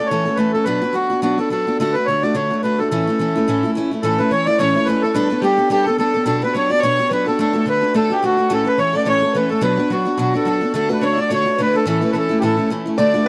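A reedy, up-front accordion carries the melody over a picked steel-string acoustic guitar in this lively, bright Celtic reel at 214 BPM in A mixolydian, swung on the eighths, with a dark, woody bowed fiddle joining softly in the background at 4.0 seconds, a twangy fingerpicked banjo sounding a D5 at 13.0 seconds, and light reverb giving the short clip from a longer piece a dark, warm production.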